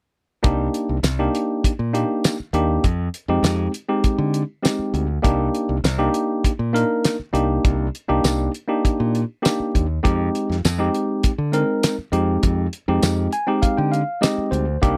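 A cloth-damped, thuddy drum kit with a fat snare, tight kick and tambourine sits up front in this mournful, smoky straight-eighth soul blues, alongside a bright fingered electric bass and a clean tine electric piano through a combo amp that plays a fill from 13.0 to 14.8 seconds, all captured as a dry, close 1970s-style studio recording with light reverb.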